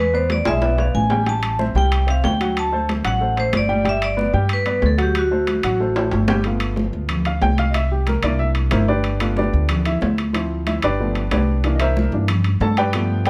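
A metallic vibraphone melody with slow motor vibrato opens this sunny, danceable Afro-Cuban jazz piece at 185 BPM in G mixolydian, over an intimate baby grand piano with audible action noise and a woody pizzicato upright bass up front, joined within the first second by distant, high-tuned congas in the background and vintage, band-limited metal-shell timbales, before the vibraphone stops at 6.1 seconds and the piano takes a solo from 6.5 seconds to the end, all captured in a close, dry, detailed recording.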